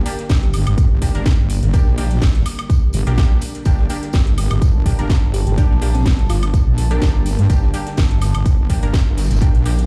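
Bass house at 125 BPM in G minor, this aggressive, gritty excerpt rides a heavy, saturated wobble bass and a punchy, up-front electronic kick beneath a detuned, wave-folded pad sustaining a single G minor chord, a house drum kit with cracking snare, metallic hats and woodblock, a dark, smooth cocktail kit of hi-hat, snare and tambourine in the background, bold orchestra-hit-like sawtooth stabs with tape echo, and a sparkling bell-like FM electric piano melody from 5.3 to 7.4 seconds, with the pad, bass, stabs and cocktail kit pumping against the kick in a large studio reverb.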